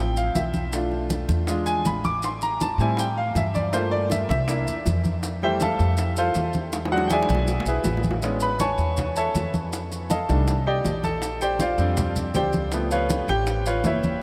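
Lively and sophisticated, this short Afro-Cuban jazz cut from a longer piece moves at 160 BPM in a straight 4/4, with a brilliant, up-front upright piano carrying a solo throughout over harmony that runs from a rootless Dm9 through Bm7b5, E7b9 and Fmaj9 before shifting at 8.2 seconds to Amaj7, F13, Bb69 and C#7alt. A woody, pizzicato upright bass on steel strings anchors the low end, while low-tuned congas struck with hard hands sit close and dry in the background, joined by round, saturated bongos played with soft hands and grainy, mellow maracas, with a drum fill from 6.7 to 8.2 seconds. A huge ambient reverb places the whole ensemble in a vast, echoing space.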